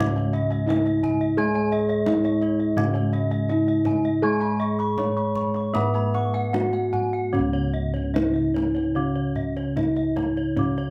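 This serene, shimmering Javanese gamelan passage, cut from a longer piece, is led by a mellow, softly struck bronze metallophone melody, close and dry, over a darker, smooth metallophone accompaniment and round, beating bossed gongs in the bass sitting up front. Above them, a bright, airy metallophone with paired tuning and shimmering beats spins arpeggios throughout, joined by bright bossed-gong arpeggios until 7.2 s. A deep kendang played with hard hands sounds distant in a large room, and the whole ensemble carries a light reverb into a new section at 7.3 s.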